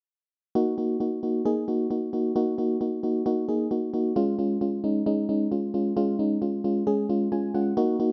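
An FM electric piano with tremolo carries this short pop passage, its full-bodied, dark tone sitting up front with a fast attack, a decaying tail and a noise layer in the sound. The mood is nocturnal yet driving, moving at 133 BPM in a straight 4/4 in Eb minor. Playing an accompaniment role between Ab3 and Ab5, the piano holds on Ebm from 0.6 seconds before shifting to Db at 4.2 seconds. A brief piano fill arrives at 7.1 seconds, just before this fragment of a longer piece breaks off. A wet small-room reverb and a rough home-demo mix give the sound an unpolished character.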